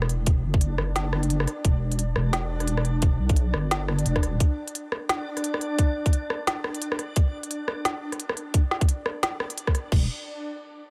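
Half-time drum and bass at 174 BPM in 4/4, this cinematic, spacious excerpt cut from a longer piece rides a 16th-note swing of 58% with a half-time feel, tuned to A4 = 444 Hz. An organic electronic drum kit opens the passage, its woody snare, crisp hats, rim clicks and crash cymbal carrying a tape-warm, small-room character, and an electronic kick drum, tight and layered, joins it up front from 0.3 seconds. A deep, soft wobble bass in the E1 to B1 range is also present from the start, dark and detuned with a sine-and-triangle body, thickened by chorus and tube saturation, before dropping out at 4.4 seconds and briefly returning near 9.9 seconds. Above it, a backwards swelling texture held on D4 drifts in at 0.6 seconds, reversed and granular with a slow attack, long release and its own reverb, lending a dreamy, bright shimmer. A digital ambience surrounds the whole arrangement with a sense of open space.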